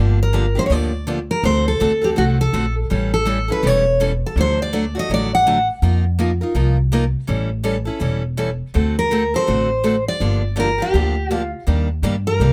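Fiery and swinging, this excerpt of acoustic string swing in G minor moves at 164 BPM with a swung eighth-note feel, an up-front upright bass giving a woody, pizzicato foundation under a bright, full-bodied jumbo acoustic guitar playing accompaniment throughout. A second picked steel-string guitar carries the melody with a slapback echo and audible finger squeak, dropping out after 5.7 seconds and returning at 9.0 seconds. The close, detailed microphones and dry room keep every string sound immediate as the chords run from Gm7 through D7, A7 and F7sus4 before landing on Ebmaj7.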